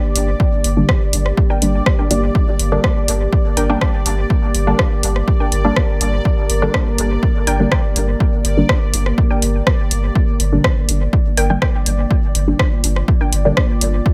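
Nocturnal and deep, this dub techno excerpt sets a dark, moody ambient pad and a bright, bubbling stepped-filter texture over a clean sine sub bass, a punchy overdriven kick and deep house kit with hi-hat and rim click, while a muted, phased chord stab enters at 0.8 seconds and a warbling, lo-fi dusty pluck joins at 1.5 seconds, both trailing dub echo and breathing with sidechain pumping.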